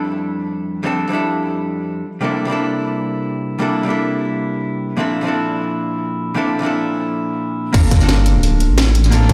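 A clean, dark hollow-body jazz guitar with delay opens this dreamy, warm liquid drum and bass excerpt up front, voicing lush extended chords from Fmaj13 through C13 and Bbmaj9#11, until the drop at 7.7 seconds brings in a deep, rumbling detuned sawtooth bass, a tight overdriven electronic kick, a layered kit with cracking snare, bright hats, crash and tambourine, and a gritty, rolled-off breakbeat kit sitting in the background, all under a Gm11 chord and a stone-room reverb.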